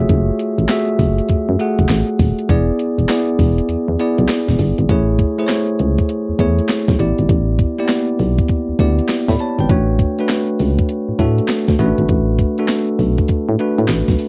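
R&B new jack swing with an upbeat, bouncy feel and a swung groove, built on a bell-like, bright tine electric piano, a punchy, round FM bass and an up-front gated 80s digital drum machine whose thumpy kick drops out from 3.7 to 4.9 seconds, with gated-reverb snare, handclaps, hi-hat and tambourine, moving through chords like F#m9, Amaj7 and Dmaj7/A in a dry, close studio sound cut from a longer piece.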